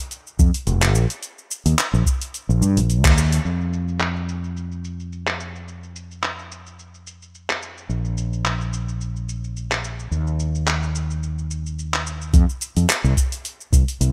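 Sunset chillout with a relaxed, easygoing mood, set in 4/4 with a lightly swung sixteenth-note feel, cut from a longer piece. A layered deep house drum kit sits up front, its handclaps, hi-hat and shaker overdriven and softened by low-pass filtering, with a small-room character. A round, punchy fretless electric bass carries the low end from 0.4 seconds, sitting close and forward in the mix. A deep, analog electronic kick drum, overdriven and heard in a large room, thumps under the opening stretch until about 3.1 seconds, with the band hitting an accent at 3.0 seconds, then returns for the closing section from 12.3 seconds. The whole has the light reverb and rough, unpolished feel of a home demo.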